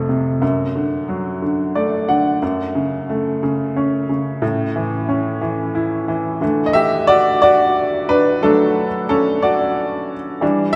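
Heartfelt and romantic, this pop excerpt in D major and 6/8 at 60 BPM (dotted quarters), tuned to A4 = 442 Hz, features a solo upright piano whose woody, intimate tone sits up front with audible action noise, adding a fill at 1.4 seconds and moving through D/F#, F#m and A before reaching a Dadd9 as the second section begins at 6.4 seconds, all bathed in a wet church reverb that lingers for 2.8 seconds.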